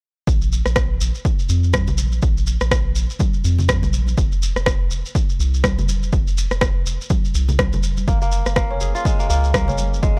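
A punchy, overdriven electronic kick sits up front with an equally gritty rim click to drive this hypnotic, spiritual afro house cut in Bb minor at 123 BPM with a swung 16th feel, over a deep, round analog bass with sidechain pumping and a filter sweep, a grainy shekere, and bright, hard-hand congas from 1.7 s, before a crisp, ringing fingerpicked kora joins at 8.1 s with analog delay, all in a dry, small-room hardware sound.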